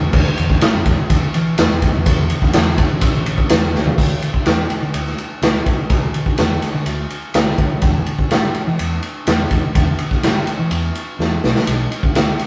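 Trippy and hypnotic, this psychedelic rock excerpt moves at 125 BPM in a straight 4/4, built from just a fuzz-drenched fingered electric bass, round and overdriven in its low register, and a raw garage drum kit of kick, snare, toms, ride and crash. The kit sits up front and louder than the bass, its punchy kick and medium-tuned snare sounding gritty and saturated with a rolled-off top in a bright stone room. Drum fills land at 3.7 seconds, just before the music shifts into a new section at 4.0 seconds, and again from 11.2 to 11.7 seconds, all captured with light reverb in a rough rehearsal-room recording.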